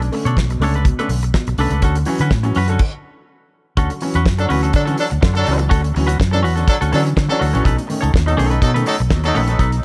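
An excerpt of joyful, celebratory disco at 124 BPM opens with a damped 70s drum kit, a fingered electric bass, a semi-hollow electric guitar and a concert grand piano all playing together from the start, moving from Bm7 to Dmaj7. The dry, acoustic kit sits up front with a fat snare and tight kick alongside hi-hat and crash cymbal, while the dark, round, amped bass is just as prominent beneath it. The clean, picked guitar has a compressed, hollow-body tone in its middle register, and the warm piano adds a natural, deep-voiced accompaniment in a lower range. After a stop from 2.8 to 3.8 seconds, the music moves into a new section, and a horn section enters at 4.4 seconds with pop-style stabs, heard as a distant, roomy ensemble with light vibrato and analog delay. The harmony shifts to B7 near the close, with the parts set in a small room ambience.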